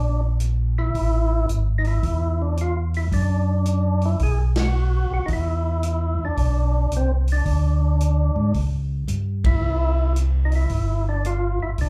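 A round, up-front tonewheel organ bass line with slow rotary speaker anchors this greasy, soulful soul jazz organ trio, cut from a longer piece, as a percussive tonewheel organ melody with vibrato and slapback echo sits above it, a vintage drum kit with dark cymbals and a punchy kick joins at 0.4 seconds, and the swinging band hits accents at 4.5 and 9.3 seconds, all heard live through a club PA with light reverb.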